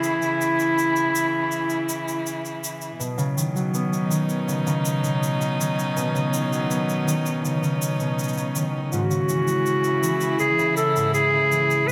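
Folktronica with a hopeful, playful air, this brief excerpt sets a smooth, vibrato-rich bowed string quartet holding sustained chamber chords under a brushed acoustic shaker, while a warm, classical-style solo clarinet carries the melody through a delay at the opening and again from 8.9 seconds, and a ringing, thumb-plucked concert harp, also with delay, enters at 3.0 seconds with arpeggios, the whole mix sitting in a moderate plate reverb.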